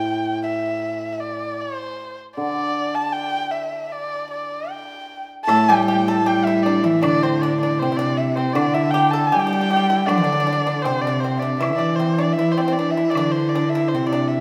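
In a straight 2/4 at 78 BPM, this pastoral, festive Chinese chamber piece opens with a dark erhu carrying the melody up front, its airy bow, soft attack, vibrato and portamento sounding intimate over the shimmering, ringing low accompaniment of a hammered dulcimer. At 5.5 seconds a second section begins as a dry, percussive pipa played with fingerpicks and a rich, smooth bowed cello join as second lines, with a very quiet woodblock adding light percussion. The ensemble sits in a recital hall reverb that lingers around 1.4 seconds, and the passage is cut from a longer piece.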